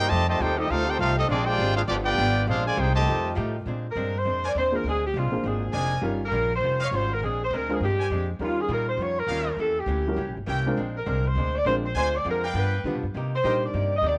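Swinging and brassy, this big-band jazz passage, cut from a longer piece, moves at a brisk, buoyant swing. It opens with a clear trumpet section carrying the melody over a bright trombone section's second line, touched with slapback echo, while a very quiet saxophone section holds tight, close-miked chords beneath. A woody pizzicato upright bass sits up front throughout, joined by a clean, compressed hollow-body archtop guitar picking out the accompaniment. At 3.9 seconds a mellow saxophone section takes over the melody with light vibrato and a smooth top, as a brilliant trumpet section punctuates with stabs. A dark baby grand piano, intimate with audible action noise and short sustain, adds accompaniment from 4.7 seconds, and the whole band sits in light reverb and small room ambience as the harmony moves through ninth chords toward a Cm7.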